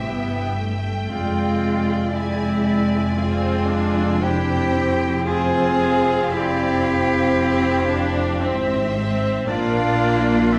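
A close, expressive solo cello carries the melody in this bittersweet, sorrowful fragment of a cinematic film score, its bowed line softly attacked and colored by vibrato and portamento. Behind it, a smooth, lush violin section also carries the melody in the background, while a second, focused violin section, a clear solo clarinet in classical style, and a pure, straight-toned concert flute play secondary lines. A close viola section fills in the accompaniment, and a mellow French horn section holds sustained chords with light vibrato. Underneath, a rich double bass section and a focused cello section, which enters at 0.1 s, anchor the bass in bowed ensemble tone. The music moves slowly at 57 BPM in a rubato 4/4, drifting from Am7 to Fm and arriving on Bb at 9.5 s, all bathed in the wet reverb of a recital hall.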